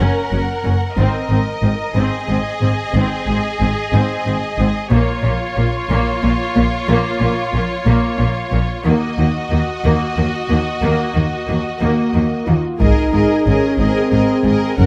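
Heroic and relentless, this cinematic, epic orchestral film score moves in a straight 6/8, cut from a longer piece. Strings carry it from the first moment: the violins sing the melody with a smooth, vibrato-laden tone while a second violin line, softer in attack and more expressive, moves beneath it, and the violas add lush accompaniment with touches of portamento from a more distant place in the sound. Cellos give a rich, even foundation in the background, doubled below by double basses bowed with light vibrato. The passage builds steadily over chords of Gb, Ab, Bbm and Ebm until a mellow French horn section enters at 11.8 seconds with sustained chords, and at 12.8 seconds the harmony lands on Abadd9 as a taiko ensemble strikes with hard sticks, its acoustic hits carrying a small-room character. Close, detailed microphones and light reverb keep the orchestra intimate yet lush.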